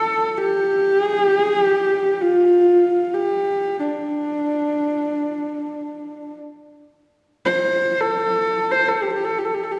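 A dark, husky horsehead fiddle plays alone from 0.0 to 9.8 s in this short extract of vast, solemn Mongolian traditional folk music in free time and the D yu mode, tuned to A4 = 445 Hz, its single bowed voice sitting close and intimate with vibrato, portamento, a soft attack and an airy bow tone over a range from D4 to C5, set in a lush scoring-stage reverb with a 2.0-second decay heard from further back in the room.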